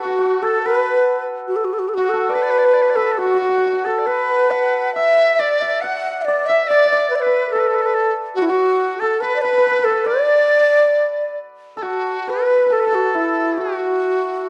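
A moderate recital-hall reverb surrounds this short cut from a longer Chinese chamber piece, a pastoral yet festive passage in a free, rubato feel. A breathy low xiao carries the melody up front with soft attacks, vibrato and rolled-off highs, while a large dizi, pure and reedy with a buzzing membrane and tongued notes, adds a second line beside it. A hammered dulcimer rings and shimmers underneath throughout, and the music moves into a new section at 11.8 seconds.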